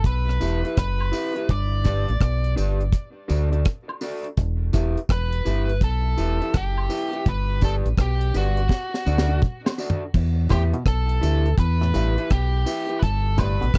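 Meditative and laid-back, this dry, close-miked roots reggae passage in a 1970s studio style rides on a swung groove from a round, dark fingered bass and an up-front acoustic drum kit with a high-tuned snare and tight kick. A bright, overdriven picked lead guitar carries the melody through tape echo, while a slightly broken-up electric guitar adds accompaniment and compressed, saturated tambourine and woodblock sit low in the mix; after a drum fill at 8.7 seconds, a hollow, nasal muted clav enters at 10.5 seconds with overdriven arpeggios tucked in the background.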